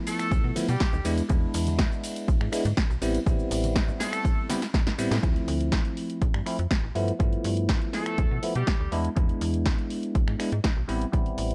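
Filtered disco house with a sensual, funky mood, this cut pairs a bell-like tine electric piano coloured by phaser and vintage 12-bit sampler grit with a brilliant, close-miked horn section melody full of vibrato and octave doubling, over a snappy, metallic FM slap bass, an up-front punchy electronic kick, a tape-warm analog drum machine of snare, hi-hat, ride cymbal, finger snaps and cabasa, and bright tambourine and congas in the background that drop out at 5.2 seconds after a drum fill, when a filter sweep takes over the dry, sidechain-pumped groove.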